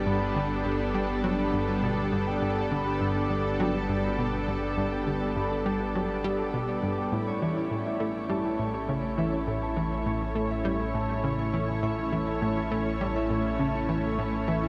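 A lush, detuned unison pad with chorus holds sustained chords over ringing, thumb-plucked concert harp arpeggios that run through a filter sweep and tape echo, while a fat, tube-saturated analog bass sits low and a round sub-octave pluck riff with chorus and echo enters at 0.1 seconds, all moving from G to A at 7.1 seconds in this expansive, cosmic fragment of sequencer-driven space music in G lydian at 102 BPM, bathed in a long shimmer reverb and a dark production.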